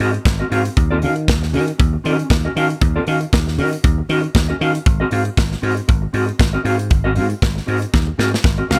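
A driving 117 BPM disco groove in 4/4 with a light 16th-note swing sets a sultry mood in Eb dorian, moving from Ab9 to Ebm7 and back to Ab9 across this short cut from a longer piece. A polished, airy studio drum kit with a punchy kick and medium-tuned snare sits up front beside a bright, growly, foam-muted thumbed slap bass, while a dark, clean, fingered electric guitar adds tremolo-shaded accompaniment. Small room ambience surrounds the playing, and a drum fill arrives at 7.9 seconds.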